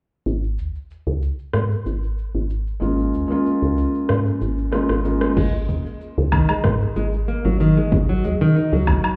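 Mystical and earthy, this organic downtempo excerpt at 94 BPM in straight 4/4 opens on a C#6/G# chord, where a woody, round, dark FM bass carries a filter sweep and an overdriven deep house kit of crash cymbal, rim click, shaker and woodblock sits in a large room; a soft felt-muted upright piano with audible action noise, sidechain pumping and tape echo plays accompaniment from 2.8 s, a drum fill arrives at 4.7 s, and at 5.4 s a deep overdriven electronic kick joins fingerpicked classical nylon-string guitar arpeggios bathed in tape echo, all heard muffled as if through a wall in a club-like echo chamber.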